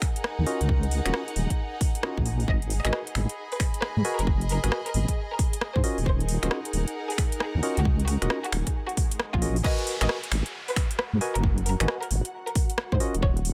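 A punchy, tape-warm electronic kick sits up front alongside a deep, dark wobble bass with a chorus sheen, driving this bouncy, skippy two-step UK garage excerpt at 134 BPM in G# minor, swung on the sixteenths. A house drum kit adds metallic hats, finger snaps, rim clicks and a crash, while a barky tine electric piano plays bright, clean stabs through delay. A close, focused chamber violin section carries the melody from 2.5 seconds with vibrato and dub echo, and a sul tasto string section adds intimate, soft-edged texture with sidechain pumping until 9.6 seconds. Behind them, an ethereal, airy pad holds sustained chords with ensemble chorus, built-in reverb and its own pumping, as the harmony moves between D#m9 and G#m9. At 9.6 seconds the track drops into its second section, with a background swell and downlifter that begins at 8.9 seconds carrying into it, all in a dry, close mix.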